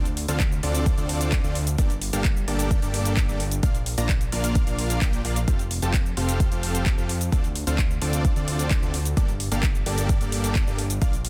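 A straight groove drives this anthemic, uplifting clip of festival progressive house, with a punchy, up-front electronic kick arriving at 0.4 s over a layered house kit of cabasa, handclaps and metallic hi-hats. A huge, detuned supersaw riff with a sub octave pumps against the sidechain and trails dub echoes, while a fat, up-front analog bass pumps underneath on decaying notes. The harmony cycles through Dm7, Gmadd9, Bb and Fadd9 in a dense, heavily limited modern master with digital ambience.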